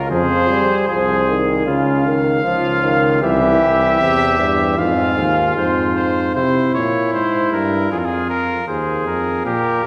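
This classical imitative canzona for brass ensemble, a short passage cut from a longer piece, has a driving yet solemn character in a steady, straight four. The trumpet carries the melody up front with a clear, punchy tone and light vibrato, while the flugelhorn sings a clear second line beneath it. The euphonium anchors the bass with a warm, up-front presence, and the trombone adds a distant, roomy, warm accompaniment until it drops out at 6.3 s. At that point the passage moves into a new section, with trumpet, flugelhorn and euphonium carrying on to the end near 9.9 s. The ensemble is heard from further back in a recital hall, whose wet reverberation lends the brass a spacious, ceremonial sound.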